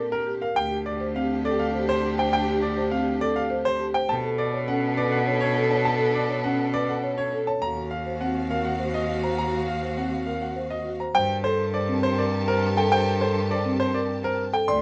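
A clear, intimate baby grand piano with audible action noise carries the melody up front in this urgent, hypnotic stretch of minimalist classical pattern music in G minor at 102 BPM in 3/4, over woody soft-mallet marimba arpeggios, a rich, intense cello bass with vibrato, a distant French horn second line in the background, and the sustained chords of a studio string section with soft attack and expressive portamento, all captured dry and close before the harmony shifts to Gmadd9 at 11.1 seconds.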